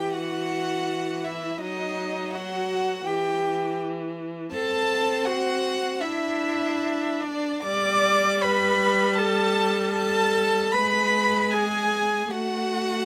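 A serene string quartet opens together at once in a slow, rubato romantic movement around 67-85 BPM, with two violins sharing the high melody and second line over a viola accompaniment and a dark, smooth-topped cello bass. All four players bow sul tasto with an intimate, close sound, the violins carrying light vibrato, a soft attack and an airy bow while the viola and cello sit up front. The harmony settles into G major from 4.5 s, and light reverb gives this brief fragment of a longer piece a gentle glow.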